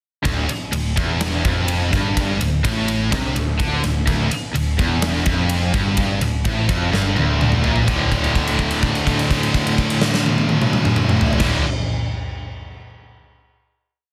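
Driving and menacing, this short hard rock piece in D minor at 126 BPM stacks three single-note guitar riffs (a bright, cranked stack guitar with overdrive and tremolo, a heavy high-gain guitar with distortion, and a very quiet, double-tracked sludgy guitar) over a dark, round hollow-body bass doubling the riff in driving eighth notes and a huge, up-front arena drum kit with a punchy kick and half big groove, until a drum fill at 6.9 seconds leads into a held final D5 chord from 7.9 seconds, all in a dense, heavily limited modern master with light reverb.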